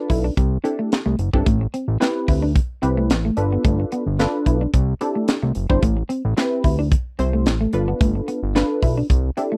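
A fat, saturated analog bass with a plucky filter sits up front in this slick, late-night early-eighties boogie funk, over a tight acoustic drum kit of hi-hat, high-tuned snare and tight kick in a small room. A dark, detuned polysynth comps through a chorus and a moving notch, while a clean, fingered semi-hollow electric guitar plays a riff bathed in lush chorus. The dry, close studio sound carries the short cycle of C6, Am9 and G9 chords, in a brief cut from a longer piece.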